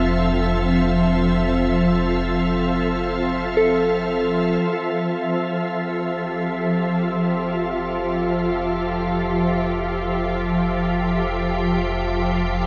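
Opening on a sustained Fmaj7 from a bright, pure, organ-like additive pad up front, shimmering with ensemble chorus, this peaceful, serene ambient passage in free time, cut from a longer piece, carries a gentle, warbling FM synth bell in the background playing chorused, delayed arpeggios until 4.7 s, while a round, deep analog bass holding F1 fades in from 4.6 s, the whole passage resting in a vast, echoing cathedral space.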